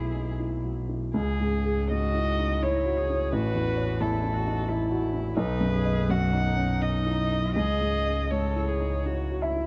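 A rubato passage in 3/4 unfolds through this short melancholic, longing stretch of neoclassical piano and strings, cut from a longer piece. A single con sordino violin carries the melody up front, its veiled tone shaded with vibrato and portamento and set in plate reverb and tape echo. Beneath it a lone muted cello sings a second line with light vibrato, while a bowed double bass, also up front with a smooth top, anchors the low end. A dark, woody upright piano supplies a mellow accompaniment, moving from E/B through C#m, A and B before settling on C#madd9 at 7.5 seconds. The whole 9.7-second passage sits in a light reverb with a soft, rolled-off top, giving it an intimate, longing hush.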